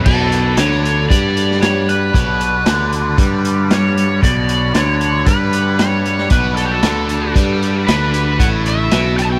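This short psychedelic rock fragment, cut from a longer piece, opens at 0.0 seconds with a buzzy vintage combo organ holding sustained chords with heavy vibrato, sitting in the background under a double-tracked, overdriven electric guitar riff treated with phaser and tape echo. A round, punchy picked bass, overdriven and placed up front, anchors the low end beside the riff. At 0.1 seconds a bright slide guitar enters with a fingered, overdriven melody in a higher register, trailed by its own tape echo, while a crunchy breakbeat kit joins with a saturated, gritty sound: a punchy kick, a medium-tuned snare, hi-hat, and dark crash cymbals with a rolled-off top. The harmony rests on Bm7 before moving to Aadd9 at 8.4 seconds, in a straight, steady groove. The small room ambience and echo-heavy mix give the whole passage a hypnotic, trippy haze.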